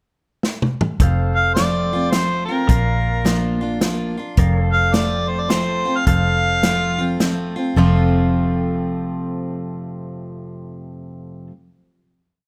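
Close, detailed microphones and light reverb frame this complete, easygoing honky-tonk and classic country waltz in F major at 106 BPM with a swung 3/4 lilt: a punchy, natural acoustic drum kit plays a fill at 0.4 seconds before settling into its groove, a bright dreadnought acoustic guitar alternates bass notes and strums, a dark, foam-muted vintage electric bass plays root and fifth, a softly mixed, twangy pedal steel adds clean chords with volume swells and glides, and an up-front, mellow harmonica carries a down-home, motif-based melody with light vibrato and scooped notes, until the guitar, bass and pedal steel hold a final chord from 7.8 seconds.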